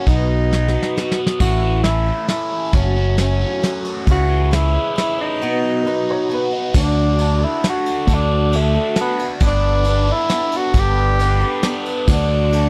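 A mellow tenor saxophone carries the melody up front with vibrato, subtone and scooped notes, leading this nostalgic, hopeful folk rock and heartland rock excerpt in 3/4. Beneath it, a shimmering, octave-doubled twelve-string acoustic guitar and a biting, double-tracked overdriven guitar with phaser play alongside a round, punchy fingered electric bass and a soft brush drum kit, which starts a fill at 0.5 seconds. A dark, woody upright piano with audible action noise slips in briefly at 5.8 seconds, all captured in a dry, close 1970s-style studio sound.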